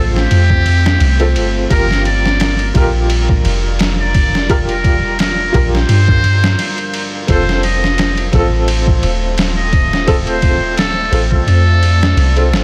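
Trip hop at 86 BPM with a 16th-note swing, melancholic and brooding, moving from F to Gm7 at 1.7 seconds and back to F at 7.3 seconds in this short cut from a longer piece. A buzzy, thin trumpet with a metal mute carries the melody with vintage vibrato and tape echo, over a felt-muted upright piano whose intimate, mellow tone, audible action noise and tremolo sit beside a deep, detuned sawtooth pad drifting in the background with chorus and reverb. Up front, a soft, round 808-style bass and an overdriven, pitched-down sampler kit with a thumpy kick, snare and ride anchor a dense, heavily limited master dusted with vinyl crackle.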